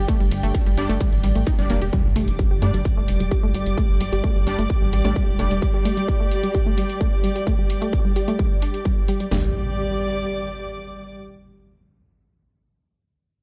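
Cut from a longer driving, intense and industrial peak-time techno piece at 130 BPM, this passage opens on a G5 chord with a warbling, dusty lo-fi pluck riff, a tight, punchy sequencer bass, a very quiet, deep and moody ambient pad drone and a dark, intimate sul tasto chamber string section, the pluck, bass and strings all pumping against a distorted kick and cracking snare set up front with warm hi-hats and ride cymbal; a thick, aggressive rave stab with tape echo enters at 0.8 seconds, electronic impacts strike at 1.9 and 9.3 seconds, and the strings carry on with the final impact to the close in a dry, gritty hardware sound with light digital reverb.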